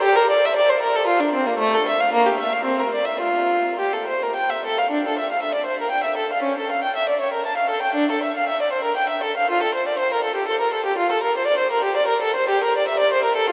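A lone bowed violin with a nasal, gut-string period tone plays close and up front in this flowing, introspective fragment of a baroque-style suite movement in triple time, its rubato phrasing drifting into a minor shade at 4.9 s while a huge, wet reverb casts the line into a vast, echoing space.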